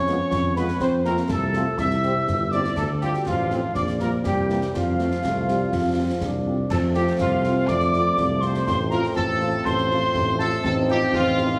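Set in a straight 2/4 at 122 BPM, this festive, spirited military-style march for wind band in F major is a brief cut from a longer piece. A distant, roomy trumpet section carries the melody from the start, while a hollow wooden piccolo with vibrato and a crisp attack sings a pure second line high above, and a warm euphonium adds another second line from the background. Underneath, a close-miked tuba sits up front on the bass, the most prominent part in the mix. A very quiet French horn section supplies accompaniment and a smooth-topped trombone section holds sustained chords, both with light vibrato, alongside concert snare drum, concert bass drum and dark clash cymbals in a small room. The harmony moves through F, C, Dm7 and C7 in the opening strain before settling on F; that strain repeats at 6.7 seconds and closes on F7/A at 10.6 seconds. Heavy radio-style compression and a wet scoring-stage reverb give the band a mellow, radio-like sound with a small room ambience.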